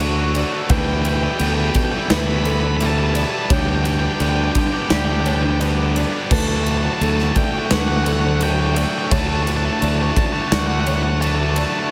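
A growling, overdriven fingered electric bass sits up front on a low D in this soaring, hopeful post-rock excerpt at 86 BPM in D major, as a huge arena drum kit with punchy kick and bright cymbals enters at 0.3 s, a dark octave-fuzz lead guitar with slapback echo carries the high melody from 0.7 s, tight distorted and overdriven electric guitars drive riffs in the background, a very quiet twangy electric guitar and a soft, felt-muted upright piano with slapback echo play arpeggios, and a glassy, warbling FM pad holds sustained chords moving from D through Em/D and Gadd9/D back to D, set in light small-room ambience.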